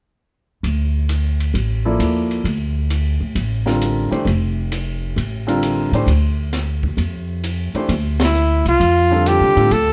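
A light reverb wraps this short cut from a longer modal jazz piece, with the band heard playing live together in one room. Upright bass and a compact cocktail drum kit open the passage at a swinging 132 BPM in 4/4 over a Dm9 chord in D minor. The pizzicato bass is woody, growly and thumpy, sitting up front, while the small kit sounds dark and smooth, with a high-tuned snare, tight kick, hi-hat and ride cymbal. A clear baby grand piano joins as accompaniment at 1.9 seconds, its tone open and long-sustaining. The harmony shifts to Dm7, the band hits an accent at 8.1 seconds, and a warm trumpet enters on melody at 8.2 seconds, singing with vibrato and scooped notes. The mood is searching and intense.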